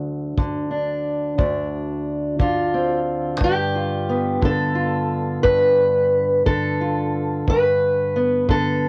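Rollicking and soulful, this short cut from a longer acoustic country blues piece rolls along in a straight 12/8. A fingerpicked steel-string parlour guitar carries the melody from the very start, its dark, boxy tone sitting up front and ranging from D2 to B4. A kick drum joins at 0.4 seconds, tight and smooth with a rolled-off top and a brushed touch, staying lower in the mix beneath the guitar. The harmony moves from D to G7 at 3.4 seconds, giving the phrase a bluesy turn. Light reverb and the character of a home cassette recording lend the whole piece an intimate, homespun feel.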